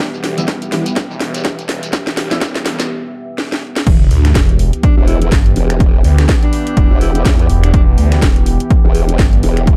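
A punchy, overdriven kick drives this bouncy, gritty bass house excerpt at 124 BPM in E minor with a swung 16th feel, joined by a house kit with a cracking snare, a swirling phased saw bass, an evolving chorused pad, a grainy shekere and a moody ambient pad, while an orchestra-hit-like synth stab with a filter sweep sits in the background of the build-up into a break before a sub drop marks the drop at 3.9 seconds; a wobbling formant-sweep bass then enters at 5.0 seconds, and a bright alto saxophone with light vibrato plays a short melody from 4.8 to 7.8 seconds, all in a dark, dry production.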